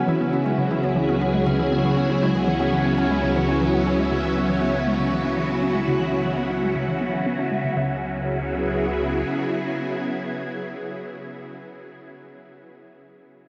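Mysterious and expansive, this excerpt of ambient, sequencer-driven space music moves at 119 BPM in C# minor, resting on a single C#m7 chord as an up-front, swirling phased string machine holds bright sustained chords through 11.8 seconds. A fingerpicked concert harp rings out arpeggios through analog delay, a fat, wave-folded analog bass fades out, and in the background a hollow, nasal square pluck riff with chorus and delay bounces beside a bubbling texture of random resonant filter steps. The dreamy mix is soaked in a huge reverb with a cassette-tape character, and the harp drops away at 6.5 seconds while the strings carry on alone after 9.2.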